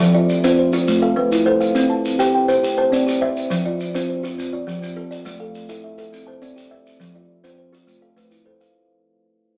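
Rippling and warm, this short excerpt from a longer southern African traditional piece in 12/8 sets two woody, ringing, hollow-box kalimbas, both thumb-plucked, spinning mbira-style interlocking arpeggios over a cycle of F, Am and C, one airy and up front, the other just behind, while grainy, mellow maracas sit distant in the large room, the whole fading out across its 8.7 seconds in moderate studio reverb.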